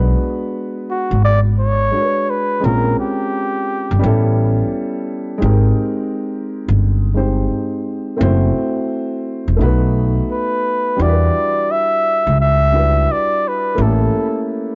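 Jazz-hop with a swung, nocturnal and smoky feel, cut from a longer piece, set on a dark, vintage-toned upright piano comping rich extended chords beside a woody pizzicato upright bass up front, while a breathy, mellow flugelhorn with light vibrato sings the melody in two phrases beginning at 0.9 and 10.3 seconds, the whole mix sitting in a small, dry room with a gritty, transformer-saturated, dulled cassette sound.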